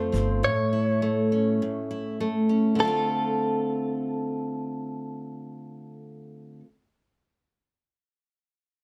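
The recording has a dark, warm production with a light reverb around it. A picked steel-string acoustic guitar sits up front with a full-bodied dreadnought tone, carrying the accompaniment through this short pop excerpt. Above it, a clean electric guitar, recorded direct and compressed, plays the melody with a touch of spring reverb. Both guitars sound from the start, and a lightly swung sixteenth-note feel gives the tender, reflective mood a gentle lilt. The harmony rests on an A chord before moving to Dm7 at 2.8 s, where a new passage begins, while the electric guitar's melody stays in a narrow high register a little beneath the acoustic in level.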